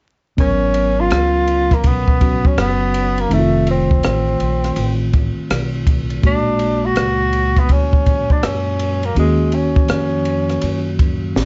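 At 0.4 s a mellow, nocturnal jazz-hop groove begins at once: a compact cocktail drum kit, upright bass, tine electric piano and breathy tenor saxophone all enter together at a relaxed 82 BPM in 4/4, with a lazy swing on the sixteenths in G# dorian. The saxophone carries the solo melody up front, its subtone voice colored by light vibrato and scooped notes, while a plate reverb gives it a distant, roomy glow before it stops at 11.0 s. Beneath it, the clean, direct electric piano voices the chords G#m11, F7, A#7alt and D#m7. The pizzicato upright bass sounds woody and thumpy on steel strings. The small-room drum kit sits forward with a dark, smooth character, a punchy kick, a high-tuned snare, rim clicks, hi-hat and ride, its top end rolled off. Vinyl crackle and a dulled top end lend the whole fragment a dusty, late-night haze as it plays on to 11.4 s.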